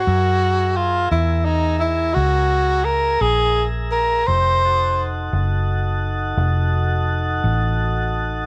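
A breathy tenor saxophone leads this brooding, smoky slow blues, its whispered, intimate tone carrying scooped notes, a soft attack and vibrato in a jazz-style solo placed up front. The tempo sits at 57 BPM in a straight 12/8, and the harmony moves from Gb7 to F7b9 at 4.3 seconds. A tonewheel organ sustains smooth, clean chords beneath, with audible key click, a stationary speaker and a subtle chorus, sitting well back in the balance. A vintage muted fingered electric bass anchors the low end with a dark, round, foam-muted sound that is amped and close. The saxophone line drops out at 5.1 seconds, leaving organ and bass to carry on until the clip ends at 8.5 seconds. A light, small-room reverb gives the whole a sense of closeness, and the passage is cut from a longer piece.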